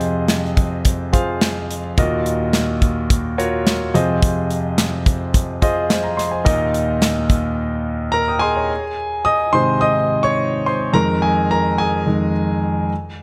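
Anthemic and hopeful, this piano-driven pop excerpt moves at 107 BPM in a straight 4/4, with an intimate concert grand carrying the chords from Fm7 through Ebmadd9 and Ebsus2, its deep bass, long sustain and audible action noise placed up front. An acoustic studio drum kit with a tight kick, a medium-tuned snare and hi-hat drives the opening until 7.4 seconds, joined briefly by hollow, very quiet group handclaps from 4.8 seconds. At 8.7 seconds the piano plays alone, moving to Ab and back to Fm7 in light small-room reverb.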